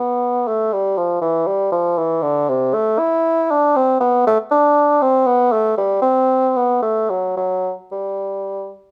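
A warm, up-front solo bassoon with light vibrato plays alone from 0.0 to 8.7 seconds, spanning C3 to E4 in a serene, flowing baroque-style classical fantasia in G major, tuned to A4 = 438 Hz, moving in a rubato 3/4 at roughly 104-121 BPM within light reverb, as a fragment cut from a longer piece.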